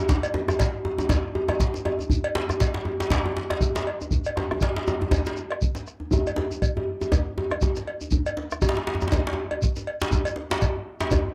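A dry, close 1970s-style studio sound with a modest booth ambience frames this excerpt of a West African traditional drum ensemble, driving and powerful, in 4/4 with a swung sixteenth-note feel. A dark, close bombo anchors the low end beneath two djembes played with hard hands: one warm and roomy, the other tight and cracking, set up front. A grainy, mellow shekere and a metallic, band-limited vintage cowbell sit further back and run together with the drums from the opening moment to 11.2 seconds.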